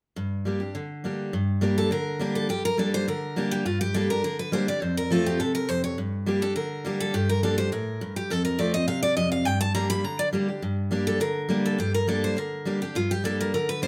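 Moderate studio reverb surrounds this short, rustic and driving bluegrass cut in G minor at 206 BPM, where a bright, full-bodied picked steel-string acoustic guitar sits up front with audible finger squeak, picking an accompaniment that moves between Gm and F from 0.2 s, and a second dreadnought-toned picked guitar, also up front with finger squeak, enters on the melody at 1.8 s and carries it high through to the end.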